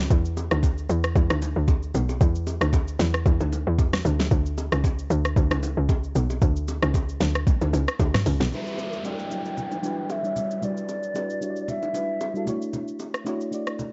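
Amapiano at 114 BPM in E dorian, hypnotic and late-night, opening on a drop where a tight, punchy log drum bass drives under a soft-kicked, fat-snared R&B kit and quiet, vintage-toned congas and bongos. At 8.5 seconds the bass stops as a filter sweep begins, and a mellow, round FM electric piano with chorus and phaser enters alongside a breathy concert flute, vibrato-laden and softened by a low-pass filter and delay, over a faint electronic downlifter. The whole cut sits dry and up close, with the warbling pitch drift and dulled top of worn cassette tape.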